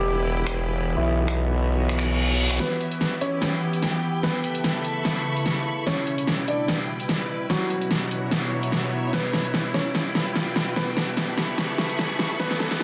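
A dense, heavily limited modern master with a moderate plate reverb frames this aggressive, menacing excerpt of heavy wobble dubstep, taken from a longer piece at 147 BPM in 4/4 with a half-time feel and a light 16th-note swing, in E dorian. A dark, mellow concert grand piano carries the melody through tape echo, while an evolving wavetable pad holds bright, warbling sustained chords through chorus and its own reverb, and a clear, lush studio string section adds bowed texture with vibrato. Up front, a sawtooth-and-sine wobble bass pushes through a formant filter with chorus and overdrive until it stops at 2.6 seconds. A layered electronic drum kit enters at 0.5 seconds with finger snaps, bright hats and a huge overdriven snare, re-recorded in a small room and sitting up front. A very quiet reverse cymbal and riser arrives at 1.9 seconds, leading into a long build-up and drum fill as the chords cycle through Em, Bsus4 and A.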